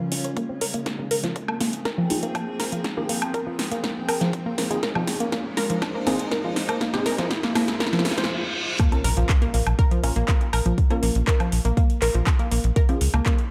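Melancholic and hypnotic, this melodic techno cut in Bb dorian at 121 BPM builds for 8.8 seconds, as filter sweeps move across a bright, morphing wavetable pad, a round, nasal analog pluck arpeggio with chorus, tape colour and delay, and a dark, muted dub chord stab, while a punchy up-front kick, an overdriven deep house kit of handclaps, metallic hats, snare and woodblock, and a background riser and reverse cymbal lead into the drop, where an impact lands and a tight, driving sawtooth sequencer bass enters, the pitched parts and the hats and percussion pumping against the kick in a lush hall reverb.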